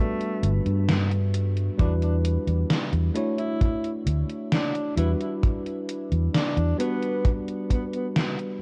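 A slow, straight 4/4 pulse comes from an up-front, sampler-style 80s drum machine playing hi-hat and a gated-reverb snare, joined at 1.8 seconds by a tight acoustic kick, while a growly, amped fingered electric bass adds tube saturation underneath. A bright, bell-like tine electric piano carries the chords through lush chorus and tape echo, and a smooth solo alto saxophone sings a warm, classical-style melody with vibrato and its own tape echo. This hazy, melancholic vaporwave excerpt sits in a dark cassette-tape production with a small room reverb, moving through Gmaj7, Em9 and Dmaj9 chords.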